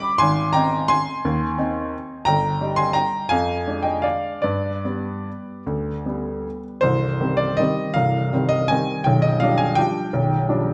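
A classical piano waltz in 3/4, elegant and bittersweet, in which a solo baby grand with a warm, present, up-front tone moves with rubato through Ab, Eb/G, Ddim/F and G before reaching C minor at 6.8 s and G7/B at 9.1 s, its notes spanning B0 to D6 within a moderate recital hall reverb, in a short fragment cut from a longer piece.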